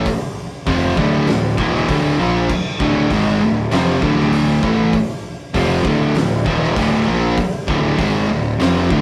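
This stoner and doom metal excerpt moves at 98 BPM in a straight 4/4, parked on a single D minor chord for its nine seconds, with a hypnotic, sludgy mood. An oversized, low-tuned acoustic drum kit enters at 0.1 seconds with a fat snare, boomy kick, hi-hat and crash cymbal, its sound dark yet smooth, saturated and gritty in a bright stone room. Three guitars carry the riff between D2 and Bb3: an up-front thick fuzz guitar with a distorted, picked tone, a second darker fuzz guitar sitting in the background, and a double-tracked overdriven electric guitar also set back in the mix. Beneath them, a picked electric bass, recorded direct and amped, adds a punchy, overdriven fuzz low end from D1 to Bb1. Moderate studio reverb colors the rough rehearsal-room recording.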